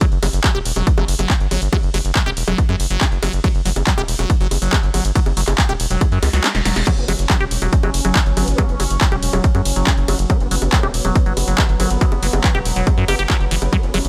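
Dry and close, with little room around it, this hypnotic, intense psychedelic trance excerpt drives forward in a straight four. An overdriven, layered electronic kick sits up front with a heavy punch. A punchy techno kit of snare, handclaps, hi-hat, ride, crash and bongos is also overdriven and close at hand. Beneath it, a round analog bass holds a deep, mellow, sustained low end. A squelchy, resonant liquid acid bass carries the riff with filter sweeps, phaser, tape echo and sidechain pumping. At 6.2 seconds a reverse cymbal and a drum fill mark a turn, and the kick drops out from 6.4 seconds. At 6.9 seconds a bubbling stepped-filter texture enters with soft, sustained chorused chords that pulse with sidechain pumping, while a nasal, wobbling vowel-sweep bass murmurs very quietly as a second line.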